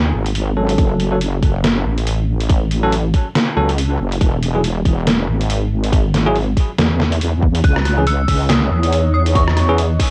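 A saturated, detuned sawtooth wobble bass opens this dark, heavy deep dubstep excerpt at 0.0 s, soon joined by a gritty, pitched-down sampler-style kit of handclaps, hi-hat, rim click and snare, a tight layered electronic kick, and bright, bell-like tine electric piano stabs with dub echo under a filter sweep. The 140 BPM half-time groove swings its 16ths as the chords move from F#m to E to C#m. At 7.6 s an eerie, inharmonic FM synth bell melody enters alongside a reversed, dreamy granular swell in the background, all within a lightly reverberant, cassette-recorded home sound.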